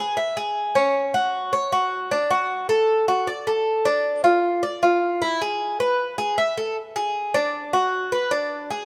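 A solo Cuban tres opens this short Latin excerpt, its picked double strings ringing with a warm, metallic edge. The tempo is a brisk 155 BPM in a straight 4/4, yet the mood stays warm and relaxed. The tres sits up front in the mix and plays between C#4 and E5, with some of its strings doubled at the octave, which gives the acoustic tone a shimmering fullness. A moderate plate reverb with a 2.8-second tail surrounds the instrument in a glossy halo. The opening passage runs to 6.8 seconds, when a new section begins and carries on until the clip ends at 8.8 seconds, cut from a longer piece.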